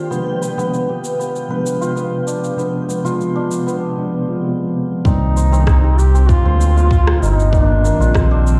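A smooth, up-front sawtooth synth bass with vibrato arrives at 5.0 seconds alongside a tight, tape-tinged electronic kick drum, joined at 5.1 seconds by a distant, roomy duduk melody with delay, deepening this meditative organic downtempo excerpt in C minor at 97 BPM. From the start, a shimmering hammered santur ripples through arpeggios with delay, while a mellow tine electric piano with sidechain pumping and delay and a produced electronic cabasa and rim click run throughout. A very quiet, ethereal pad with phaser and a twinkling granular texture in the background hover until 3.8 seconds, and the chords move from G7b9/C to Cm9 in a large, reverberant room with a light digital ambience.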